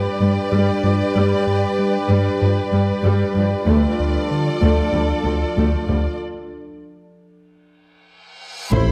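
A straight 4/4 pulse at 95 BPM drives this relentless, tense hybrid orchestral and electronic film score cut from a longer piece, where a smooth, ring-modulated synth bass riff and an evolving, chorused analog drone sit under a smooth violin section line, intimate close violas and distant, woody cellos over G moving to Dm, while a barely audible baby grand piano stops at 3.7 s, a huge reverse cymbal enters at 8.4 s, and with the impact at 8.7 s a violin melody, very quiet mellow French horns, a thick saturated sub bass, double basses and a roomy background tuba all enter in a moderate scoring-stage reverb.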